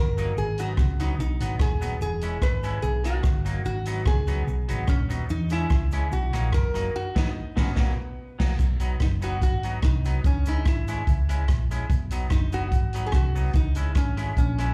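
Lightly swung in 4/4, this bouncy, cheerful ska passage is heard as a live club gig through the PA. Up front sit a swinging big-band drum kit with a punchy kick and a dark, round hollow-body bass, while a twangy clean electric guitar with warbly pitch drift and slapback echo plays accompaniment and a very quiet, grainy cabasa adds texture. A nasal, metallic resonator slide guitar played with fingerpicks carries the melody. A band accent arrives at 6.9 seconds before the music shifts to new chords at 8.6 seconds.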